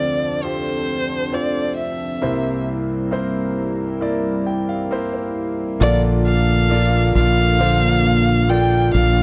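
A slow, straight 4/4 pulse at 67 BPM carries this longing, emotional pop passage, cut from a longer piece, where an expressive solo violin sings the melody up front with vibrato and portamento over a clear, natural grand piano and a shimmering, retro pulse-width pad with chorus, moving through Dm7 and C7. A piano fill at 4.0 seconds leads into a new section at 5.8 seconds on Bbmaj7, where a punchy, round fretless bass arrives prominently, a mellow French horn section adds a second line in the background, and a very quiet, bright steel-string acoustic guitar picks arpeggios. The sound is a dry, close 1970s-style studio recording with a small room ambience.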